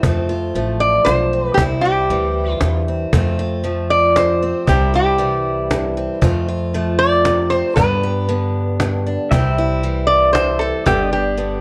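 A nasal, metallic lap resonator guitar played with slide and fingerpicks carries the heartfelt, easygoing melody up front from 0.8 seconds in this honky-tonk and classic country piece in 3/4, in C major at 116 BPM, over a boxy, picked acoustic archtop guitar, a woody, thumpy pizzicato upright bass on gut strings and a snappy cajon with snares in a live room, until a bright, clean pedal steel guitar adds compressed, volume-swelled sustained chords at 9.3 seconds, all under light reverb and the worn, warbling pitch drift of old cassette tape.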